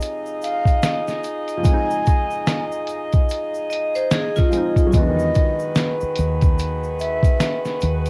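A breathy, close-miked silver flute carries the melody from 0.4 s over a mellow, nostalgic lo-fi hip hop groove at 73 BPM in Db major, swung on the sixteenths, with a compressed, pitched-down sampler drum kit up front, thumpy kick and fat snare, and a grainy tube shaker in the background. A felt-muted upright piano with audible action noise accompanies while a distant, nasal, stopped French horn section holds rootless Dbmaj9 chords through a break. A ringing vibraphone with slow motor vibrato adds a brief second line at 3.7 s, and a dark, round dub bass enters at 4.9 s as the harmony shifts to Emaj9, all steeped in cassette-tape softness and moderate studio reverb in this short cut from a longer piece.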